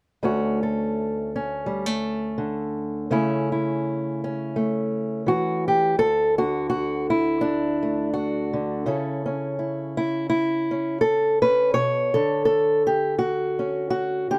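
A fingerpicked old ladder-braced acoustic guitar plays alone from the start, setting a pastoral, nostalgic folk mood at an easy, lightly swung pace in this short excerpt from a longer piece. Its tone is dark, woody and boxy, with the character of old strings, and it sits up front in a light reverb as the harmony moves from Dmaj7 through A/C# and D before settling on Bmadd9 near 11.7 seconds.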